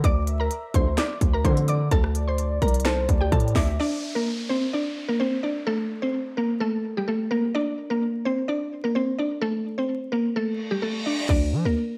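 A dreamy, reverb-soaked mix with vinyl crackle frames this menacing, melancholic half-time trap excerpt, led by a woody, round mallet-like synth pluck with chorus and a low-pass filter that carries the melody throughout. Up front, a trap kit with a hard-clipped kick, sharp snare and crisp hats pairs with a heavy, aggressive distorted 808-style bass, while a velvety synth lead with vibrato and a distant, roomy brass ensemble adding stabs sit in the background. At 3.8 seconds the drums and bass drop out, leaving the pluck over an electronic downlifter and reverse cymbal, before both briefly return at 11.3 seconds.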